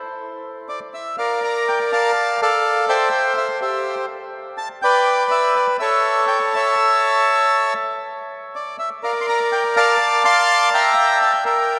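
A solo bandoneon carries this brief tango fragment, its reedy, dark voice placed up front and singing between G4 and C6. The mood is tense and melancholic. The tempo sits around 123 BPM in 4/4, though the playing moves with a rubato feel in D minor. The bandoneon enters at 0.7 seconds and plays until the close at 11.8 seconds. Its harmony moves from Bb to Dm, then through C, Bm7, A9sus4 and A, before returning to Bb and Dm and landing on Edim. A cathedral reverb with a long 5.3-second decay surrounds the instrument, so the music seems to hang in a vast, echoing space, and the fragment is cut from a longer piece.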